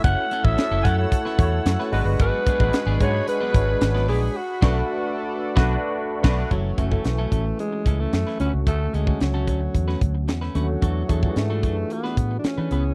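A breathy, raspy alto saxophone carries the melody from the first beat over a tight funk kit with a high-tuned snare, a dark, round muted electric bass, a barky tine electric piano with ensemble chorus and a compressed clean guitar riff with lush chorus, all in F# minor at 111 BPM. This slick, urban slice of polished 1980s jazz-funk pop moves through F#m7, G#m7b5 and Bm7, with a band accent from 4.4 to 6.5 s, while a thick, detuned sawtooth pad sits in the background until 6.5 s. The second section turns to Dmaj7 and E9sus4, and the whole cut has the dry, close sound of a 1970s-style studio.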